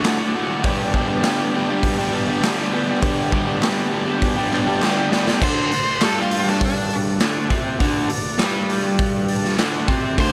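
Moderate spring reverb gives this swaggering, raw garage rock excerpt a live feel at 101 BPM in D mixolydian, moving from D to G. Up front, a punchy, gritty drum kit with a medium-tuned snare in a bright stone room drives alongside a double-tracked, picked overdriven guitar riff, while a buzzy vintage combo organ holds sustained chords with lush chorus and light vibrato in the background, and very quiet, crisp group handclaps sit beneath. Organ fills arrive near 4.2 s and 9.0 s, and after a drum fill a dark octave-fuzz lead guitar takes up the melody at 5.4 s.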